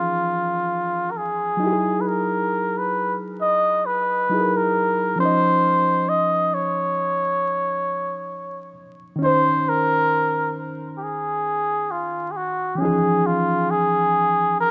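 This rough home-demo mix sits in a light studio reverb over a bed of vinyl crackle, and this short cut from a longer hip hop piece has a cosy, mellow feel. A trumpet with a cup mute carries the melody from the start, up front and soft in a jazz style, its veiled, breathy tone touched with light vibrato and a smooth top, shaded by a low-pass filter. Beneath it a reedy electric piano plays the accompaniment, clean yet bright, heard as if through its built-in speakers and coloured by cassette tape and a low-pass filter. The groove swings gently on the sixteenths in four, while the harmony moves from Dbadd9 to Emaj9 at 1.6 seconds and settles on Dbmaj9 at 5.2 seconds. A new section begins at 9.2 seconds, and both parts carry on together until the clip ends.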